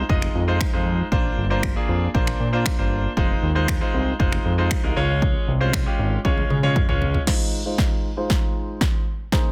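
Energetic and driving, this dance-pop excerpt sets a bright, up-front concert grand piano, treated with sidechain pumping and a low-pass filter, over a fat, detuned sawtooth analog bass that also pumps until 7.2 s, while a punchy, dry analog drum machine with soft-clipped snare drives kick, snare, finger snaps, toms and crash through a fill at 6.2 s into a build-up from 7.3 s, set in digital ambience within a dense, heavily limited modern master.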